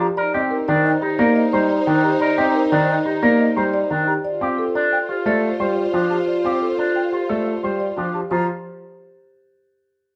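Meditative and hypnotic, this excerpt of minimalist classical pattern music moves at 177 BPM in a straight 6/4. A woody marimba with soft mallets carries the melody, while a brilliant grand piano, up front with audible action noise, supplies the accompaniment beneath it. A clean, twangy electric guitar with an envelope filter and an airy wooden flute, set in the background, spin out arpeggios over the same span. From 0.2 s a distant, dark clarinet traces a second line and a lush, bowed string section holds sustained chords with vibrato, both dropping out at 8.1 s. The harmony moves from Cm7 to Dm7 and settles on Fsus4 at 8.3 s, all within a moderate large studio reverb.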